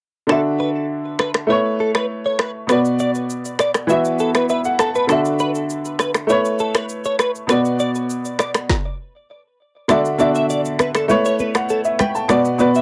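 This sounds like a home recording on cassette, softened by a light reverb and carrying a breezy, joyful afrobeats lilt in a straight four. Up front, a brilliant grand piano with short sustain lays down the accompaniment over a cycle of Dadd9, Aadd9, Bm and Esus2, its tone colored by cassette tape. A clean, picked electric guitar recorded direct plays a twangy, scooped riff, compressed and dressed in analog chorus, tape echo and cassette tape. The electronic afro-pop kit sits forward with a deep kick, woody snare, rim clicks, finger snaps and shaker, and the groove halts for a stop at 8.7 seconds. When it returns at 9.9 seconds the kick is muted, and damped, high-tuned congas played with soft hands enter in the background for the closing stretch.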